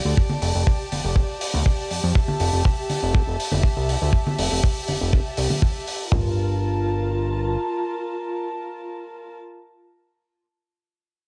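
Nu-disco at 121 BPM in G dorian, this groovy, sensual cut from a longer piece sets a damped 70s drum kit with a tight, dry kick and toms up front, a dry hi-hat with a rolled-off top, and compressed, saturated congas played with soft hands. A fat analog bass of sawtooth and square waves with a moving notch filter sweep pumps under sidechain in the low register, while a close, intimate chamber string section bowed sul tasto with light vibrato holds sustained chords, roughened by 12-bit sampler grit and cassette tape and pumping as well. The drums, congas and hi-hat drop out by about 6.2 seconds as the harmony moves from F6/9 to Gm9 at 6.1 seconds, leaving bass and strings, with the strings carrying on alone to 9.4 seconds in a small room with light reverb on a home cassette recording.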